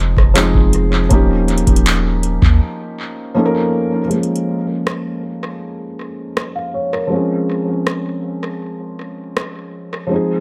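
A booming analog drum machine sits up front in this late-night, moody contemporary R&B piece, its deep kick, metallic hats, handclaps and rim clicks given an overdriven grit and a tape echo, with the sound of having been re-recorded in a small room. Alongside it, a felt-muted upright piano, also up front, plays the accompaniment through a low-pass filter and tape echo, its thick felt giving a mellow, intimate tone with audible action noise close to the ear. A soft 808-style bass adds a round, sine-like low end with a fast attack that decays into darkness, but it drops out at 2.6 seconds as a break begins. From 4.1 seconds a filter sweep moves across the piano as the harmony shifts from Fm7 and Eb9 to Bbm7 and Dbmaj7. The mix is dry of reverb yet heavy with echo, and the recording is cut from a longer piece.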